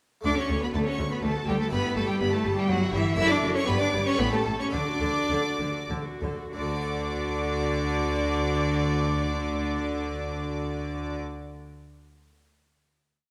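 In a straight triple metre at 92-124 BPM, this short, complete baroque-style concerto movement in D major moves with a lively, festive spirit, broadening as it slows between 2.4 and 6.5 seconds before settling onto a final chord held from 6.5 seconds. A solo cello carries the tune with expressive vibrato and portamento, while a chamber violin section sings the melody high above, close and rich-toned, and a second, clear and intense violin section doubles the tune at the octave. Beneath them, a distant viola section rocks a two-note figure and sustains smooth chords, and a cello section supplies repeated and sustained bass notes that an up-front double bass section doubles. A brilliant, airy harpsichord, set in the background, fills out the texture with full, rolled chords from 0.2 seconds until 11.6 seconds. The ritornello passes through D, Em/G, D/F#, G and A7 back to D, and the whole ensemble sits in a wet recital hall reverb that lingers around every part.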